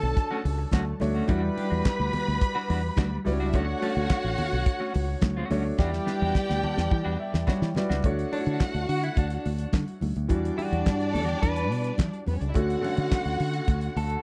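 A celebratory, danceable disco groove in D major at 106 BPM opens on Dmaj7 and Em9 chords. It begins with lush, dark bowed strings, a clean, picked electric guitar with tremolo, an intimate grand piano with audible action noise, smooth horn stabs and a punchy, foam-muted fingered bass up front, joined almost at once by very quiet, bright congas and a damped 1970s drum kit with a fat snare, tight kick, hi-hat and handclaps. During a drum fill and a piano fill, the horns stop at 7.7 seconds, and the guitar then takes a solo from 8.0 seconds to the end, all in a dry, close 1970s-style studio sound.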